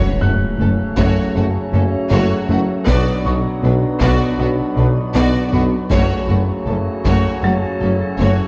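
A dark, warm production set in a moderate scoring-stage reverb opens this short cut from a hybrid orchestral and electronic film cue in F# minor, moving at 79 BPM in a straight 4/4 with a relentless, futuristic mood. A huge, dark impact hits at the start and rings until 2.9 seconds, while the harmony moves from F#m to Bm and back to F#m. Lush bowed strings carry the music: a rich violin section sings the expressive melody with vibrato and portamento, a clear, intense second violin line and smooth, even violas sit behind it, and a very quiet cello section joins focused double basses and a clear tuba on the low bass line. Mellow, roomy French horns and a tight trombone section hold soft sustained chords, and solo taiko drums enter at 1.0 seconds with heavy sticks, close and dry. On the electronic side, a round, deep analog bass drives a riff, a harp-like synth pluck rings out arpeggios with chorus, and an eerie, warbling FM drone with chorus and its own reverb hums in the background. 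A boxy, intimate grand piano, its action noise audible, adds high texture through tape echo.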